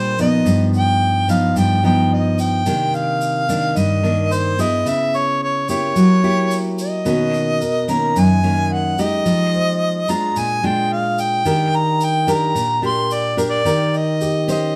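A relaxed, romantic bossa nova moves in a straight 4/4 at 109 BPM in Eb major, with a grainy, bright tube shaker entering at 0.2 s and sitting distant in the background. Up front from the opening, a full-bodied, fingerpicked nylon-string guitar carries the accompaniment with a deep classical tone and audible finger squeak. A mellow solo harmonica sings the jazz-style melody over it, its soft attack, light vibrato and scooped notes giving the line a tender, unhurried quality. A warm, intimate grand piano joins in the background from 7.1 to 10.4 s and returns briefly at 14.2 s, its natural sound carrying a touch of action noise. The harmony drifts through lush chords such as Cm9, Bmaj9 and Fm9 before settling on Ebmaj7. A moderate large-studio reverb surrounds this short passage cut from a longer piece.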